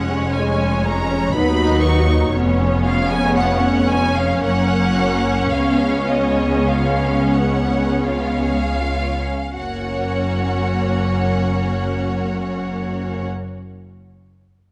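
A slow, romantic classical movement for string orchestra in F# major and 3/4, tender and serene, moving with rubato between 37 and 62 BPM and slowing from 0.9 to 9.6 seconds before a new section arrives at 9.6 seconds on an F# chord. Lush, focused violins carry the melody high above a second violin line, while an up-front viola section supplies smooth, even accompaniment and bowed cellos and double basses, the cellos sitting in the background, anchor the bass with vibrato, lighter in the basses. A moderate scoring-stage reverb gives the ensemble a distant, rich sheen in this brief cut from a longer piece.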